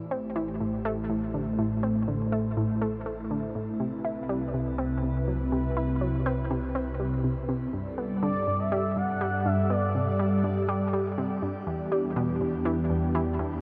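A round, nasal analog pluck riff with tape echo drives this cosmic, mysterious excerpt of sequencer-driven ambient space music at 122 BPM in A minor, set over a swirling, phased analog pad holding dark sustained chords through Am7, Cmaj7, Gsus2 and Em7, a slowly evolving analog drone bass, and an expressive, mellow portamento lead with vibrato and 12-bit grit that sings its melody from 8.2 to 10.2 seconds, all bathed in huge shimmering reverb and cassette-tape character.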